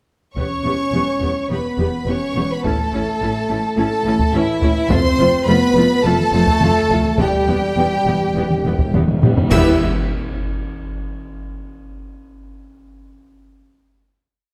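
Heroic and relentless, this epic orchestral film cue sets a lush, vibrato-laden symphonic violin melody over a chamber violin section doubling the tune at the octave, smooth violas on repeated notes, dark, soft-attacked French horns also doubling the tune, and bowed cellos and distant double basses holding the bass, driven by a hard-stick taiko ostinato, while close, dry timpani fill from 7.2 seconds alongside dark cymbal swells, crashes and concert bass drum strokes, leading to a band accent at 9.5 seconds and a final chord ringing in wet scoring-stage reverb.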